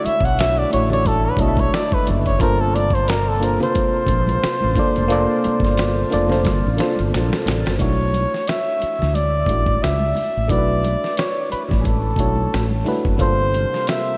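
R&B with a neo-soul lean, this introspective, sultry passage, cut from a longer piece, moves in 4/4 with a lightly swung sixteenth-note feel over Bm11 and Gm11 chords. A cup-muted trumpet carries the melody up front, its soft, veiled, breathy tone touched with light vibrato and a punchy, close-miked jazz edge, trailed by tape echo. Underneath, an FM electric piano supplies dark, quickly decaying accompaniment with a noise layer, while a mellow fretless electric bass sits round and direct in the low end. A dusty, gritty, compressed sampler-style drum kit with a thumpy kick, medium-tuned snare and hi-hat stands forward and plays a fill from 6.4 to 7.8 seconds, at which point the tonewheel organ, smooth with key click and a slow rotary speaker in the background, drops out until returning at 13.2 seconds. Very quiet, ringing congas played with hard hands add a live-room shimmer, and the whole dreamy mix is soaked in a moderate, huge ambient reverb.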